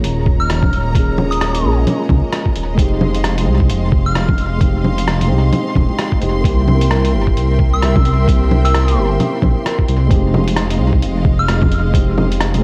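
Melancholic and rainy, this future garage excerpt in F minor moves at 131 BPM with a swung 16th feel, as a dark, detuned saw bass with tube saturation rumbles up front beneath a felt-muted upright piano carrying sampler grit, sidechain pumping, a low-pass filter and delay, lush bowed strings that also pump, a muffled, compressed lo-fi kit of bongos, hi-hat and rim click with tape echo, a thumpy electronic kick that enters at 0.3 seconds, and a soft FM synth bell with chorus and phaser that sings high phrases from 0.4 and again from 7.7 seconds, all set in an echo-heavy mix with vinyl crackle.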